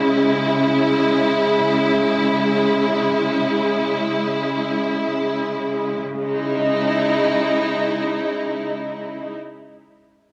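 Hazy and deep, this ambient fragment drifts in free time in C# minor, tuned slightly low to A4 = 438 Hz, as a rich studio string section holds sustained bowed chords from 0.0 to 9.4 seconds. The ensemble sounds lush and focused, with vibrato and a smooth top end, sitting up front in a moderate plate reverb that lingers for about 2.4 seconds. Cut from a longer piece, it rests on a single C# minor harmony, shifting into a second section at 6.0 seconds.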